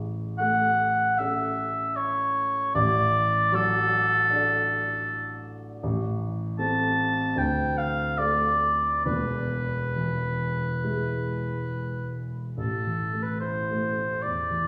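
The rhythm moves in a loose, rubato 4/4, hovering between 66 and 80 BPM and breathing freely. This is an elegiac, melancholic romantic classical duo, cut from a longer piece, for grand piano and oboe. The warm grand piano provides the accompaniment from the opening moment, reaching from deep in the bass up to the middle register. The mellow, roomy oboe enters at 0.4 s to carry the melody up front, singing in its upper-middle range. The harmony starts on A and D over A, settles into A minor at 5.8 s, passes through D and E, and returns to A minor at 12.6 s as a new passage begins. A wet recital hall reverb surrounds both instruments, and the listener seems to sit some way back in the room.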